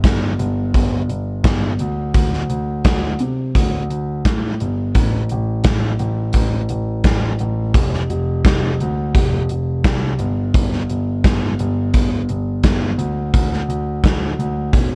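A cassette-tape sound with light reverb frames this swaggering, gritty classic rock excerpt, which moves at 86 BPM in a straight 4/4. A dark, boxy concert grand piano carries the bass line up front in its deep low register, while a gated 80s drum kit, also up front, brings hi-hat, a punchy kick and a medium-tuned snare in a bright, gated stone room.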